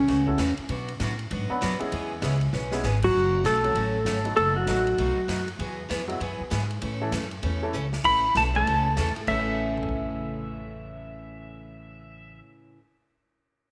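A clean, compressed pedal steel guitar with fingerpicked slide lines and volume swells carries the up-front melody in phrases starting at 0.0, 3.0 and 8.1 seconds of this playful, down-home western swing excerpt at 196 BPM in A major, joined by a second line from a dark hollow-body jazz guitar in the background, over a woody pizzicato upright bass, a picked acoustic guitar with audible finger squeak, a clear upright piano with short sustain, and an airy big-band drum kit with dark cymbals and a punchy kick that plays until 10.0 seconds, all set in an echo-chamber reverb.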